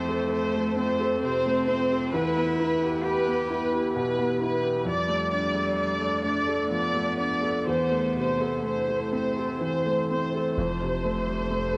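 Melancholic and longing, this rubato neoclassical fragment in 3/4 sets a veiled, con sordino violin section singing the melody with vibrato and tape echo over a dark cello second line with portamento, an intimate felt-muted upright piano accompaniment, and a glassy, ethereal FM pad held very quietly beneath, before a deep, punchy sine sub bass arrives at 10.6 s, all within a small room's light reverb.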